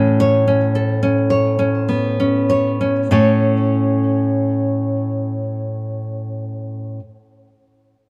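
A solo nylon-string guitar opens on an A major chord, fingerpicked up front with the warm tone of fresh strings and a deep classical character, setting a warm, sunny mood in this romantic excerpt in A major. The 3/4 pulse moves freely in rubato around 47-56 BPM, slowing over the first 3.1 seconds before a new section begins, with the guitar ranging from A2 to C#5. A moderate small-room reverb gives the playing an intimate, live feel.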